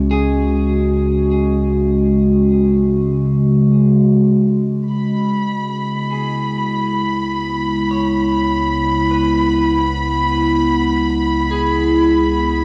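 Drenched in a huge reverb and the warble of worn cassette tape, this melancholic, spacious ambient fragment in C# minor drifts at 50 BPM as a dark, nostalgic pad holds sustained chords over a round, deep analog bass with tube saturation, while a clean, picked electric guitar traces delayed arpeggios that fade out and then back in, and at 4.9 seconds an intimate chamber violin section joins with soft sul tasto bowing and light vibrato.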